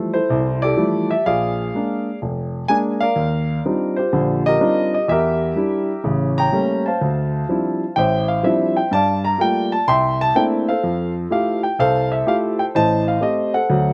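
This is solo jazz with a playful, warm mood, a short fragment of a longer piece that lasts about 13.9 seconds. A grand piano plays alone throughout in a swung 4/4, spanning a broad register from F1 up to C6, and it is tuned slightly flat to A4 = 438 Hz. Its tone is natural and placed up front, recorded in the open air with very little reverb, so the sound is close and dry. The harmony moves through rich extended chords, opening on Fmaj9 and passing through Bb7, Ebmaj13 and an Em7b5 to A7b9 turn before settling through Dm11, Gm9 and C13. It returns to Fmaj9 and closes on Am7b5, leaving the phrase open as it breaks off.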